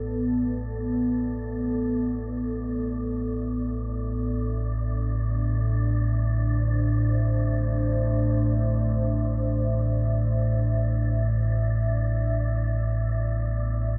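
Desolate and ominous, this dark ambient drone drifts in free time, a short cut from a longer piece, with a deep, rumbling low drone and a moody, detuned pad with chorus sitting up front. The pad holds sustained chords that move from Esus4 to Cadd9 at 3.5 seconds and back to Esus4 at 12.5 seconds, while an airy, breathy, wind-like tuned noise texture fades in quietly above them. A cavernous cathedral reverb with a long tail surrounds the whole dark production.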